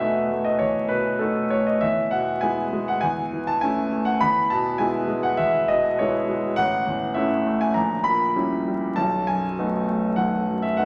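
A vinyl crackle sits beneath a wet recital hall reverb, giving this short excerpt cut from a longer piece the air of an old pressing heard in a live room. It is a romantic character piece for solo concert grand piano, hopeful and passionate in mood, played with a flexible rubato over a 4/4 metre. The piano sounds clear and natural, placed up front, with a deep bass reaching down to A1 and long sustain that blooms into the hall, while the upper register rises as high as B5. The harmony begins on a B7 chord over an E pedal and settles onto E at 1.8 seconds, then moves through A over E and back home. From 6.6 seconds it turns toward A, passes through a diminished seventh, and closes on an unresolved B7 at 9.0 seconds, leaving the phrase poised to continue.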